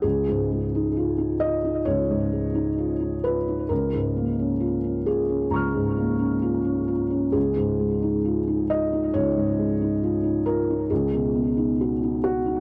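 Neoclassical minimalist piano, intimate and tender, played by a single felt-muted upright piano across a brief fragment cut from a longer piece. The playing moves with a rubato feel in 4/4, unhurried and breathing, spanning a broad register from deep bass notes up to high, delicate tones. Thick felt gives the instrument a soft, dark, mellow voice, and a touch of tape echo trails behind its notes. The harmony circles around a Dbadd9 chord, drifting to Bbm7 over a Db bass at 3.7 seconds, returning home, then settling on Cb over Db at 10.9 seconds. The sound is dry and close, with the piano placed up front in a natural, 1970s-style studio setting that keeps every hushed detail near the listener.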